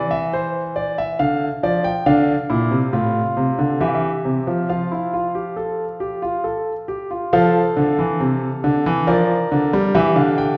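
Heard from further back in a recital hall with a wet reverb, a clear, intimate grand piano plays alone, its action noise audible beneath the notes. This brief excerpt of a baroque-style three-part fugue in F major moves at an unhurried 69 BPM in 3/4, spanning A2 to G5 with an elegant, joyful character. Around 7.3 seconds the music turns to a new section, with the harmony moving to Gm7 over F before closing on a rootless C chord.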